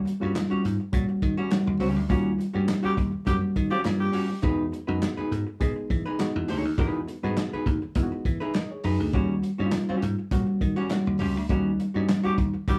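A strutting, energetic funk groove in straight 4/4, cut from a longer piece and played by a band live in one room with moderate studio reverb. A reedy, worn electric piano, slightly out of tune and lightly overdriven through its built-in speakers, punches out stabs from the start, joined almost at once by a clean, hollow-body archtop guitar picking accompaniment. Underneath, a dark, smooth soul drum kit with a punchy kick, medium-tuned snare, hi-hat and handclaps sits up front beside a dry, foam-muted thumbed slap bass. The whole band hits accents from 2.1 to 4.4 seconds and again from 11.5 seconds, and a raspy, gritty tenor saxophone growls and scoops a second line on G4 during the first accent and returns at 12.2 seconds. The harmony moves from Eb7#9 to Emaj7 and back to Eb7#9.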